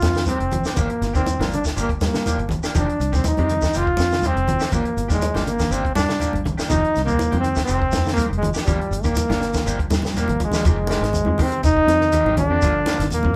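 Afrobeat excerpt at 121 BPM in F dorian, intense and funky, where a brilliant, punchy solo trombone with light vibrato leads up front over a round, foam-muted fingered bass, a dry compact cocktail kit with high-tuned snare and tight kick, bright thin-skinned congas, a grainy shekere, twangy slightly broken-up guitar stabs and very quiet clean semi-hollow guitar arpeggios, all alternating between Fm9 and Gm7 in a live small room, until a drum fill at 10.0 seconds brings in a soft, veiled cup-muted trombone section on a second line from 10.2 seconds.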